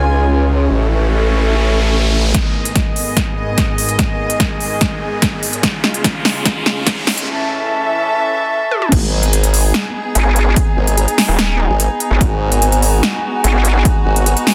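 A saturated, formant-filtered wobble bass sits up front in this chaotic, heavy half-time dubstep excerpt. It is heard briefly at the start and then returns at the drop at 8.9 seconds, joined at 10.2 seconds by a nasal, resonant vowel-sweep wobble bass. Dark, sul tasto strings hold sustained chords throughout while a deep, warbling detuned pad sustains in the background, both with sidechain pumping, and an electronic riser builds from the opening. From 2.3 seconds an overdriven big-room kit with a punchy snare, crisp hats, toms and crash joins a layered electronic kick, all in a dense, heavily limited mix with light reverb.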